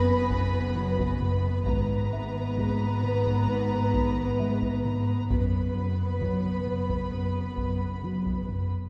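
Uneasy and tense, this short cinematic suspense cue, cut from a longer piece, moves at a slow 66 BPM in a straight 4/4, its harmony shifting from F#sus4 to G#madd9 at 1.7 seconds and back to F#sus4 at 5.3 seconds. A rich, focused violin section carries the melody high up, bowed with vibrato and a smooth top, while a second violin line with soft-attacked bowing and a viola section with expressive portamento fill the middle with lush tone. Beneath them, a smooth gliding synth bass plays a dark, sustained riff built from sawtooth and triangle tones with a moving notch, vibrato and portamento, and it is the most prominent part of the mix. Smooth, even cellos and double basses, both kept in the background, add a bowed foundation in the low register, and a delicate, bell-like celesta glints quietly behind the strings. A close violin texture shimmers only in the opening 1.2 seconds, and a taiko ensemble struck with heavy sticks enters at 0.3 seconds, its acoustic drums ringing in a live room. 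The whole cue is heard from further back in a wet scoring stage with a reverb of 1.5 seconds.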